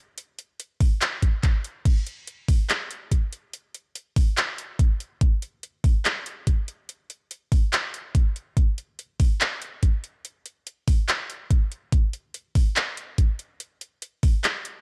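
Dry, dark production frames this euphoric, bright future bass excerpt in a swung half-time feel, where an up-front, tape-warm dubstep drum kit of metallic hi-hats, handclaps and crash cymbal enters at 0.2 seconds, a layered, knocking electronic kick joins at 0.8 seconds, and the groove gives way to a brief break at 14.4 seconds.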